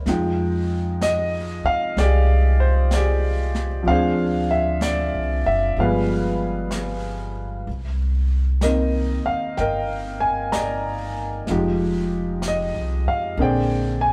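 Swung eighths at a slow 63 BPM in 4/4 carry this intimate, tender jazz ballad, with an up-front concert grand piano comping through Fm9, Dm7b5, G7b9 and Cm9 with audible action noise and deep bass, a woody pizzicato upright bass close behind, and a dark, smooth brush kit with a high-tuned snare and rolled-off top sitting low in a lightly reverberant room.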